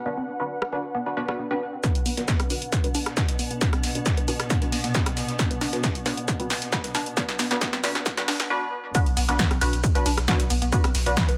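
Driving peak-time techno at 135 BPM in B minor, this relentless, intense excerpt sets an ethereal pad, a woody wave-folded pluck riff and muted, phaser-tinged dub chord stabs pumping against a heavy kick, a punchy overdriven analog drum machine and a gritty background sampler-style kit, with a swarming granular drone joining at 2.6 seconds and filter sweeps driving a build-up that drops at 8.9 seconds into a thick, saturated sub bass.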